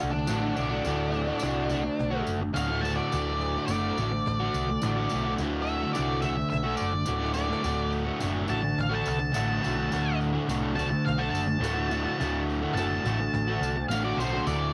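Garage rock with a swaggering, rowdy mood at 106 BPM in D mixolydian, cut from a longer piece, where an overdriven, double-tracked semi-hollow guitar riff sits up front with cassette tape grit, a round, dark hollow-body short-scale bass holds the low end, a snappy cajon plays very quietly with a fill at 7.1 seconds, a bright, jingly tambourine stays in the background, and an octave-fuzz lead guitar solos throughout, all in a lightly reverberant home cassette recording.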